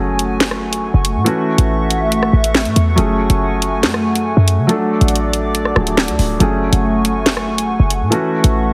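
A heavily compressed, radio-like sound with light reverb frames this short drill cut, which moves at 140 BPM in 4/4 with a half-time feel in F# minor, carrying an ominous, cold mood. A felt-muted upright piano sits up front, soft and intimate, its thin felt and audible action noise giving the accompaniment a natural, mellow close-up quality. A hollow, flute-like pad holds sustained chords with a slow attack, its airy, detuned tone thickened by chorus. A short 808-style bass hits punchy and tight with a fast attack and a decaying tail, its sine body edged by a noise layer. The electronic drill kit enters at 0.2 s, up front with a sharp snare, bright hi-hats, rim clicks and handclaps, all carrying a tape-warm tone. The chords circle through F#madd9, A6 and D, keeping the dark harmony suspended until the cut ends at 8.7 s.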